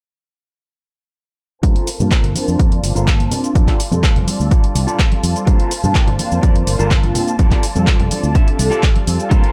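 A punchy, up-front electronic kick anchors this groovy, sensual filtered disco house excerpt at 125 BPM in G minor, where a growly fingered electric bass, a round, detuned synth brass with chorus and phaser, a slightly broken-up electric guitar riff with spring reverb, a veiled con sordino violin section and analog drum-machine handclaps, hi-hat and shaker pump under a filter sweep from 1.6 to 9.5 seconds, alongside very quiet, soft-handed tambourine and congas over alternating Gm11 and F6 chords.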